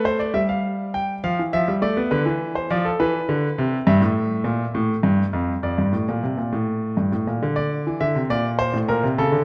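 A recital hall reverb with a 1.7-second decay surrounds this short passage, and the overall production leans dark and warm. Within that space sits a solo grand piano, placed up front with a brilliant, intimate tone, short sustain and audible action noise. It plays a baroque-style two-part invention in 6/8 at 68 beats per minute, counted in dotted quarters with a straight feel, spanning F2 to G5. The mood is lively and joyful, and the harmony moves through Fsus2 over G, F, B half-diminished over D and open fifths on E, A and D. At 7.4 seconds the music turns to a new section, colored by Cadd9 and then Bbmaj9, before the clip, taken from a longer piece, ends at 9.4 seconds.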